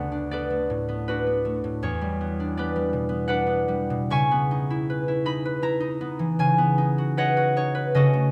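Set in a wet recital hall whose reverb rings on for 1.8 seconds, this short excerpt from a longer classical work features a solo concert harp, fingerpicked and placed up front with a warm, ringing acoustic tone. The wistful, gentle music moves in a rubato three-four, its chords passing from D6 through Em9 and C#m9 to Badd9/C# while the harp spans D2 to C#6 across the 8.3 seconds.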